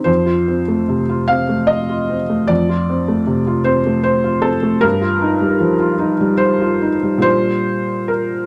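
Neoclassical minimalist piano in 3/4 at 75 BPM, tender and hopeful, with uneven, rubato timing. A solo felt-muted upright piano, soft and intimate with a vintage, thin-felt tone, sits up front and spans F2 to F5, moving from F to Ebadd9/G at 4.8 seconds and settling on Bb6 at 7.2 seconds. Moderate studio reverb and a dark production frame this short cut from a longer piece.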